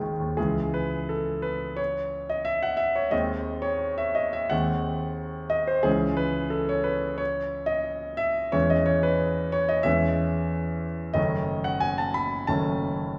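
Romantic classical character piece for solo piano in C# minor, this stormy, brooding excerpt from a longer work unfolds at 89 BPM with uneven, rubato beats, its smooth, vintage-toned grand piano sitting up front while heard from further back in a recital hall with a wet 1.3-second reverb, ranging from F#1 to B5 as the harmony moves from C#m through G#7/D# and C#m/E to a closing D#m7b5/F# at 11.2 seconds.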